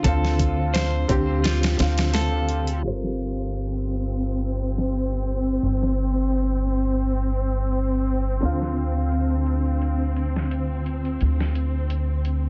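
This dark, brooding trip hop excerpt in G minor moves at 86 BPM with a 16th-note swing. It opens on Dm7 with an intimate upright piano with audible action noise, harmonic tremolo, 12-bit sampler grit and tape echo; picked arpeggios on a clean electric guitar, also echoed; a woody pizzicato upright bass up front; and a gritty sampler-style drum kit with a thumpy kick and fat snare, its hats, snare and kick all low-pass filtered. The guitar stops at 2.8 s as the harmony shifts to Gm11 and a lush, bowed symphonic string section enters up front with sustained, filter-swept chords before Dm7 returns at 8.4 s, all within studio reverb and a heavily compressed, radio-like sound with a muffled top end.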